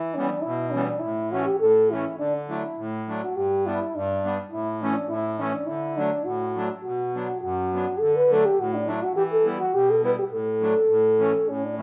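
A jolly, bouncy alpine folk snippet in a straight two-beat metre opens with a euphonium and an accordion together, the band playing live in one room with a moderate large-studio reverb. The euphonium carries the solo melody up front in a classical style, its tone warm yet distant and roomy, while the close-miked accordion supports it with a full, reedy single-reed accompaniment in a clear, dry tuning. The harmony moves briskly through minor and major chords before resting on A at 10.9 seconds, as this cut from a longer piece ends at 11.8 seconds.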